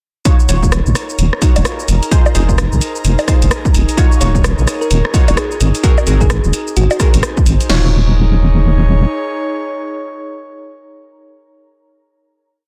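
A deep, soft wobble bass with chorus sits up front in this soulful, bouncy two-step UK garage piece at 129 BPM in Eb dorian. It rides a punchy, tape-toned analog drum machine whose two-step kick, snare and crash are joined by a quieter layer of skipping swung hi-hats, rim clicks, shaker and bongos. Dark, mellow chord stabs with ensemble chorus and dub echo move through Ebm9, Fm7 and Ab9 over a breathy pad with sidechain pumping and a very quiet ethereal pad holding a high note, while a round, tine-like thumb-piano pluck with cassette tape colour and dub echo sits in the background from 4.2 to 7.0 seconds; by 7.8 seconds the drums have stopped, leaving a final Ebm9 chord in digital ambience within a dense, heavily limited modern master.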